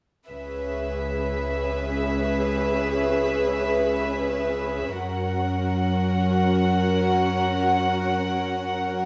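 At 0.3 s a symphonic string section settles in together: cellos holding the bass, violas filling the accompaniment, and violins carrying a second line above them. This short cinematic fragment, cut from a longer piece, moves in free time in C# dorian and feels bittersweet and moving. The violins sit up front and close, with a soft attack and a pure, floating sul tasto tone. Beneath them the viola section is darker and woody, its lush vibrato adding shadow to the middle. The cellos are also bowed sul tasto and placed forward, giving a warm, gentle foundation. The harmony rests on C#m7 before shifting to F# at 5.0 s, and a wet stone room reverb surrounds the ensemble until it ends at 9.1 s.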